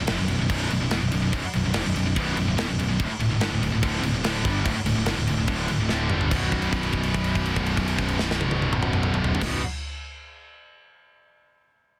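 A straight, driving 4/4 pulse powers this relentless, aggressive heavy metal cut, where a tight, up-front acoustic drum kit with bright cymbals, a medium-tuned snare and a clipped kick drives two scooped, high-gain picked guitar riffs, one set back in the background, over a growly, fuzz-laden electric bass. The riff moves from B5 to D5 before a drum fill at 5.9 seconds leads into a held note from 6.3 seconds, as the harmony returns to B5. The mix is dry, dense and heavily limited, and the clip is cut from a longer piece.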